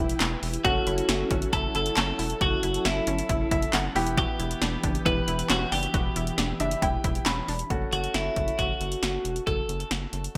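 A bright, twangy twelve-string electric guitar carries the melody through digital delay in this driving, nocturnal synth-pop excerpt at 136 BPM, backed by a punchy analog drum machine whose kick, snare, handclaps and hi-hat sit up front in gated reverb. A clear concert grand piano with deep bass and long sustain accompanies and adds fills at 3.3 and 6.4 seconds, while a rubbery square bass bounces underneath and a round, detuned analog pluck plays chorused arpeggios in the background alongside warbling, organ-like ensemble string chords. Moving from Em and F#m7 to F#m at 7.7 seconds, where the pluck and sustained chords drop out, the bright 1980s-style digital production sits in a moderate plate reverb.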